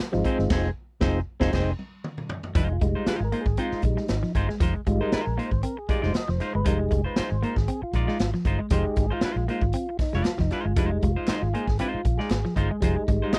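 A straight, cool funk groove in 4/4 sits on a boomy, up-front big-band drum kit with a rolled-off top and a dark, foam-muted fingered electric bass that is round and punchy. Two clean semi-hollow electric guitars fill it out: one bright and picked, playing an accompaniment part, the other scooped and fingered, playing a low riff. After a band accent and a drum fill, a lightly overdriven tonewheel organ, spun through a slow rotary speaker with audible key click, shifts from stabs into a solo at 2.6 seconds, and hollow, vintage-sounding group handclaps join in the background at 11.3 seconds in this dry fragment of a longer piece.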